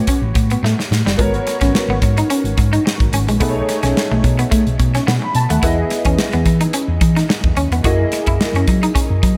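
Light reverb and a sense of studio ambience frame this polished 1980s jazz-funk pop excerpt, cut from a longer piece, moving at 108 BPM in 4/4 with a swung sixteenth-note feel in B major. The mood is upbeat and urban, carried by a chord progression that moves from A13 through G#m11, B13 and Emaj7 to F#13. A modern studio drum kit sits up front with an airy, acoustic character, a tight kick, a medium-tuned snare and hi-hat, and it plays a fill from 0.6 to 1.2 seconds. Beneath it, a hollow-body short-scale fingered electric bass gives a dark, round, amped low end, entering at 0.2 seconds. An electric guitar at the edge of break-up plays a picked, twangy riff coloured by analog chorus, while a clear concert grand piano, open with deep bass and long sustain, supplies accompaniment treated with ensemble chorus.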